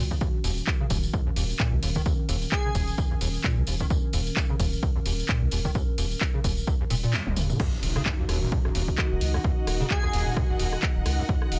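A gritty, driving acid house excerpt opens on a squelchy, saturated acid bass riff with tube grit and chorus, a round, deep analog bass, and a warbling lo-fi pad of sustained chords, all pumping against a punchy up-front kick, a jingly dry tambourine, and an analog drum machine with crash, handclaps, hi-hat, rim click and toms. An airy, dreamy lead with vibrato and tape echo touches a single high note briefly from 2.5 seconds. The kick drops out for a drum fill and band accent at 7.1 seconds, and at 7.6 seconds the drop arrives with a very quiet impact and a lush, woody string section joining the dense, heavily limited mix.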